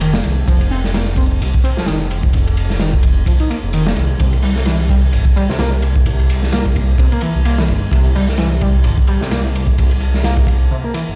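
A swung 4/4 breakbeat groove at 129 BPM drives this gritty, swaggering breaks excerpt, cut from a longer piece, with the sixteenths carrying a 56% swing and the tuning set to A4 = 441 Hz. The crunchy acoustic drum kit sits up front with a tight kick, a medium-tuned snare, hi-hat and dark ride cymbal, its saturated, mid-forward tone rolled off at the top. Beneath it, a detuned saw bass runs from F1 to C2, thick and menacing with a beating, mellow growl and fast-attack, sustained notes. An overdriven synth lead plays a screaming, guitar-like riff between C3 and Eb4, wave-folded and bright with vibrato, and dressed in distortion, analog chorus and dub echo. The harmony moves from an F5 power chord to C5 at 4.2 seconds. The whole mix sounds as if played on a big sound system in a bare room, with large studio reverb and vinyl crackle adding a dusty, lived-in haze.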